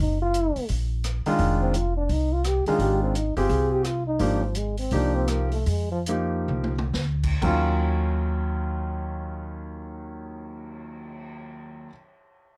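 Cool and spiritual, this short modal jazz excerpt opens with a bucket-muted trombone solo, mellow and veiled with vibrato and scooped notes, over a woody pizzicato upright bass and a distant, roomy swinging drum kit with a punchy kick. A concert grand piano with deep bass and audible action noise joins at 1.3 seconds, and the swung feel slows from 4.2 seconds. The trombone drops out at 6.0 seconds, a brief drum fill follows at 6.5 seconds, and the passage moves into a new section at 7.4 seconds. The dry sound keeps the bass, piano and trombone up front.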